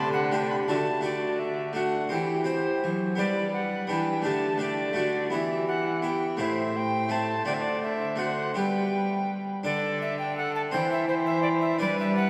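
This renaissance-style consort dance, cut from a longer piece, moves at a brisk 167 BPM in a straight triple metre with a stately yet festive bearing. An up-front alto recorder carries the melody across the whole 12.3 seconds, its woody, airy tone marked by a chiff on tongued notes and a touch of vibrato. Beneath it a single close, bowed viola plays a second line with a warm, nasal gut-string sound in period style. A bowed cello holds the bass with a rich, reedy voice. A full, plucked Italian-style harpsichord with two sets of strings fills in the accompaniment from deep in the bass to high in the treble. The harmony circles through chords such as Dsus4, D, C/E, G, Em, Am and D7, and the whole consort sits in a wet, lingering church reverb.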